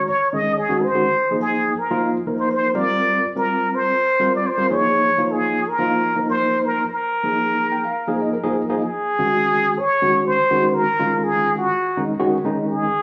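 A plunger-muted trumpet and a tine electric piano open this slick, intense jazz excerpt together at 124 BPM in a straight 4/4, the trumpet up front with a clear, wah-wah voice, vibrato, scooped notes and a touch of plate reverb and tape echo as it solos over sus-chord harmony in Bb dorian. The worn, slightly out-of-tune electric piano sounds lightly overdriven through its built-in speakers and sits up front too, adding a fill from 7.4 s. At 8.8 s the music shifts to Eb dorian on an Ebm11 chord, all within a wet studio room.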